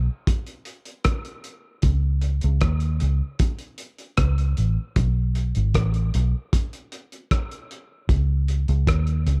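A straight 4/4 pulse at 77 BPM sets a laid-back, serious roots reggae groove in this short cut from a longer piece, tuned slightly flat with A4 at 438 Hz. A vintage muted electric bass, played with the fingers, opens at 0.0 seconds, sitting up front with a round, foam-muted, amped tone that moves between G#1 and D#2. At 0.3 seconds a cloth-damped drum kit joins on hi-hat, tight kick and rim click, its thuddy, muffled sound made gritty by saturation and a rolled-off top, as if captured lo-fi in a small room. Both parts carry on together to the end at 9.4 seconds. The production is dark and very dry, keeping the bass and drums close and intimate.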